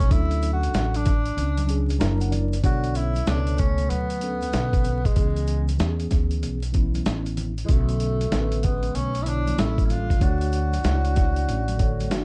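A breathy tenor saxophone opens this nocturnal, cool jazz-hop excerpt with a soloing line, its subtone and light vibrato set distant in slapback echo and plate reverb, over a mellow tine electric piano, pizzicato upright bass, a gritty sampler-style drum kit and very quiet shakers and congas. The groove sits at 95 BPM in 4/4 with a swung 16th feel, in B dorian, moving from Dmaj7 and F#7b13 into Bm9, C#m7 and A7b9. The kick drops out from 1.4 to 2.6 seconds, and from 1.7 seconds the electric piano plays a fill through its built-in speakers. At 2.6 seconds a dark, clean electric guitar enters as a second line in the background, fingered and colored by phaser. The woody bass and thumpy, compressed kit stay up front, and the whole production carries a dusty vinyl crackle under light reverb.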